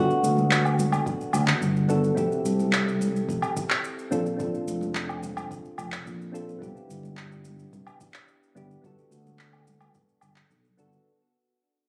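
This is a sunset chillout piece at 108 BPM in 4/4 with a straight, warm and blissful feel, cut from a longer track and fading out across its full length. A dark, thumb-plucked flamenco guitar carries the melody with a touch of delay, but only until 1.9 seconds. Soft, round electric-piano-like synth keys sit up front with a mellow, gently decaying tone, shimmering with chorus and delay. Beneath them, a growly, punchy fretless electric bass sustains low notes, and the chords move from Gmaj9 to Fmaj9, Bbmaj9 and Cmaj9 before returning to Gmaj9. An up-front electronic shaker, handclaps and woodblock, a soft electronic kick entering at 0.8 seconds, and very quiet, ringing acoustic congas fill out the groove. The sound has a moderate plate reverb and a club-like ambience, with compression and the slightly roomy character of a phone recording.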